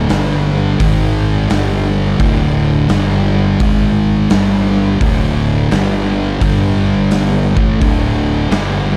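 A dark, weighty production with a moderate studio reverb frames this short cut from a longer stoner and doom metal piece, heavy and sludgy in mood. At 86 BPM in 4/4 with a swung eighth-note feel, the riff grinds through G5, G#5 and D5 power chords, returning to G5 again and again. Two thick fuzz guitars carry the riff from the very start to 9.0 seconds: one sits up front with a warm, distorted edge, while the other stays in the background with a darker tone. Beneath them, a fingered electric bass runs overdriven through tube saturation, giving a growly fuzz in the lowest register. An oversized, low-tuned acoustic drum kit enters at 0.1 seconds with a boomy kick, a medium-tuned snare and hi-hat, its big, pumping room sound coming across saturated and gritty before it stops at 8.7 seconds.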